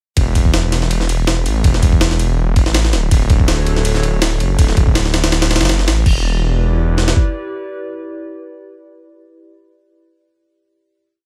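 A raw, dark drum and bass piece at 163 BPM in E dorian opens at 0.2 s with a gritty, overdriven, heavily chopped jungle breakbeat of thumpy kick, high-tuned snare, ride and crash set up front in a small room, alongside a thick, menacing detuned saw bass holding long gliding notes, before a warbling, nostalgic lo-fi pad with chorus drifts in at 3.3 s and carries the closing Em7 chord after the drop ends at 6.1 s.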